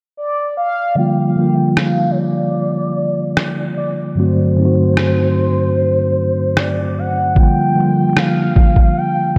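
This contemporary R&B excerpt in G minor moves at a slow 75 BPM in straight 4/4, with a sensual, longing mood. A horn-like synth lead opens the melody at 0.2 s, its round, sawtooth tone shaped by a soft attack, sustained notes and vibrato, and coloured with chorus, phaser, a low-pass filter and tape echo. At 1.0 s a mellow tine electric piano enters with clean, direct accompaniment under a low-pass filter, while a filter sweep runs through the rest of the passage. A lo-fi, sampler-style drum kit arrives at 1.8 s, its compressed, pitched-down sound built on a thumpy, muffled kick and rim clicks with a tape-warm character. The harmony moves from Gm7 to D7/G and back to Gm7, and the whole mix is soaked in a dreamy plate reverb.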